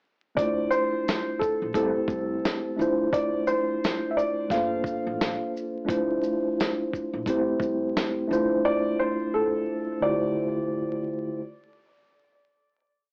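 A soft, felt-muted upright piano carries the melody in this short, complete lo-fi hip hop piece, building it from motif-based call phrases in an intimate, muted tone. Beneath it, a mellow tine electric piano holds rootless chords with grace notes, repeated like a sampled loop and colored by cassette tape, a low-pass filter and plate reverb. The mood is nostalgic and melancholic, moving at 87 BPM in 4/4 with a swung sixteenth-note feel in D minor, cycling through Dm9, Am7/C and Gm11 before settling on Dm11 at 10.0 seconds. A dusty, sampler-style drum kit plays a sparse beat with quarter-note hi-hats, a thumpy kick, a medium-tuned snare and shaker, sounding compressed and gritty as if re-recorded in a small room. A woody, growly pizzicato upright bass adds a sparse line with muted ghost notes, dropping out with the drums around 8.5 seconds so the two pianos carry the close. The whole recording sits in a wet reverb and sounds worn and warbly, with vinyl crackle, drifting pitch and the narrow tone of an AM radio.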